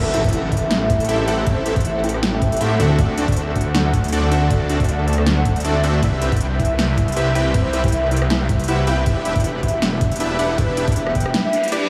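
Future bass at 158 BPM in a half-time E minor feel, lush and emotional, where a mellow, round octave-layered synth lead with chorus, phaser and diffuse delay sings over punchy detuned supersaw stabs with tape echo, a thick, up-front detuned saw bass, a very quiet unison pluck arpeggio, a knocking tape-warm electronic kick and an overdriven big-room kit of crisp hats, ride, rim click and snare, all soaked in a huge dreamy reverb, with a faint impact opening the fragment and a reverse cymbal rising at 11.5 seconds over chords moving from Am7 through D7 and Cmaj7 to Em7.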